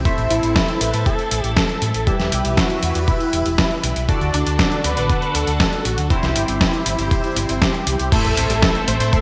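A swirling, phased string machine and glossy chorused polysynth stabs open this bittersweet, danceable italo disco excerpt at 119 BPM in A dorian, the polysynth's filter sweeping as a dark, round fingered electric bass, a gritty, overdriven sampler-style drum kit with gated reverb up front, a thumpy electronic kick and a thick, nasal, warbling unison lead with delay move through an Am–Em–D–C progression in a lush hall with bright 1980s-style digital production, until an impact at 8.1 seconds brings in a background analog pluck with chorus, delay and a cassette-tape tint, alongside a very quiet sub drop.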